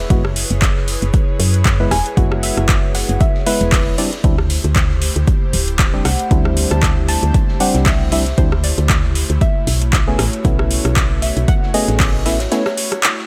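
Hypnotic and deep, this deep house fragment, cut from a longer piece, rides a swung 4/4 groove under a digital ambience. An overdriven, punchy electronic kick sits at the front, layered with an overdriven house kit of handclaps, rim clicks and metallic hi-hats, while a very quiet acoustic rock kit adds dark, smooth hi-hat, shaker and snare from deep in a big room. A woody, round FM bass with tube saturation anchors the low end and pumps with the sidechain, as does a hollow, organ-like percussive stab with chorus. Above them an airy, breathy pad with a vintage warble holds sustained chords, and a gentle, detuned pluck with subtle chorus and tape echo carries the melody from the very start. The kick stops at 12.1 seconds and the bass at 12.5 seconds, the stab follows at 12.6 seconds and the house kit at 13.1 seconds, while the pad, pluck and quiet rock kit carry on until 13.3 seconds.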